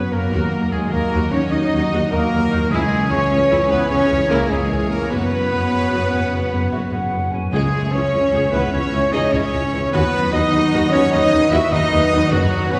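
Heroic adventure film score in 12/8 at 100 BPM in C# dorian, determined and swashbuckling, with a rich, smooth violin section carrying the melody from a distance while clear clarinet, oboe and a very quiet, intense second violin section trace supporting lines. Dark trombones and a warm French horn section hold sustained chords over the bass of focused cellos, an expressive double bass section and a dark tuba, with lush violas filling the middle, bright trumpet stabs, and ringing fingerpicked harp arpeggios. Close, dry timpani strike at 2.7 and 7.5 seconds, an airy, hollow small flute group enters briefly from 5.7 seconds, and the whole orchestra sits further back in a wet scoring-stage reverb.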